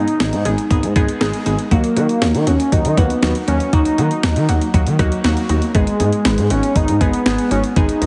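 Synth-pop in G# minor at 119 BPM, this short, melancholic and nocturnal passage is cut from a longer piece and moves from G#m to D#m at 1.7 seconds before returning to G#m at 5.7 seconds. A bold, retro octave-doubled lead carries the melody with a mellow sawtooth-and-triangle tone, vibrato, and chorus, phaser and delay colouring its sustained notes. Beneath it, a warbly, dusty pluck plays the accompaniment with a detuned, lo-fi vintage character, a noise layer and a filter sweep, its decaying notes shimmering through chorus and phaser. A smooth gliding synth bass anchors the low end, its wave-folded, saturated tone sliding between notes with portamento and vibrato. A clean 12-bit digital drum machine sits up front with a thumpy kick, medium-tuned snare and hi-hat in a tape-tinged, sampler-style sound, while a barely audible electronic downlifter passes between 0.1 and 1.7 seconds. The whole mix sits in a lush hall reverb and has a heavily compressed, radio-like sound with a dulled top end.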